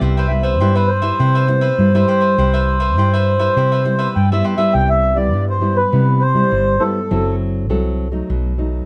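A straight 4/4 samba groove at 101 BPM drives this short, festive cut from a longer piece in C major, lively from the first beat. Up front, a round, dark hollow-body electric bass plays fingered lines low in the mix's foundation, while a classical nylon-string guitar, thumb-plucked with audible finger squeak, fills out the accompaniment through to 8.9 s. A warm, crisp, picked cavaquinho adds accompaniment higher up, sounding only until 4.7 s. The mellow accordion carries the melody from 0.2 s, its reedy voice showing the slow beating of a tone-chamber instrument. Two passes of the same section unfold over a Cmaj7 chord, turning to F#m7b5 and then B7 near the close, all set in light reverb.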